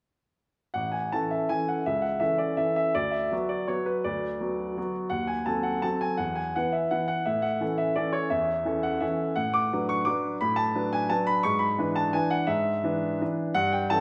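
A clear baby grand piano opens the recording at 0.7 s, playing alone as a graceful, playful classical waltz in A major. The tempo moves between 156 and 185 BPM in 3/4 with a rubato feel, giving the phrases an elastic lilt. The piano ranges from A1 up to D6, its tone open and up front, with long sustain letting notes ring. The harmony travels from A through A/C# and Bm/D to a D#dim7 and an E5, returns to A, then moves to Bm7/A and E7/G#. A wet recital hall reverb with a 1.7-second decay surrounds the instrument, and the fragment, cut from a longer piece, ends at 14.0 s.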